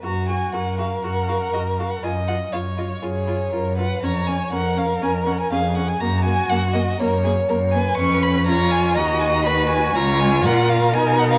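A quick, cheerful and spirited classical-period string quartet movement, cut from a longer piece, moves with an elastic rubato feel as a close, up-front first violin sings the warm, expressive melody above a more distant, rich-toned second violin line and a warm, distant viola accompaniment. A rich cello bass with a soft attack sits up front beneath them, and each of the four bowed players colors the phrases with vibrato and portamento. The quartet sounds through a moderate concert hall reverb, and the sound carries the worn, warbling character of old cassette tape with a warbly, drifting pitch.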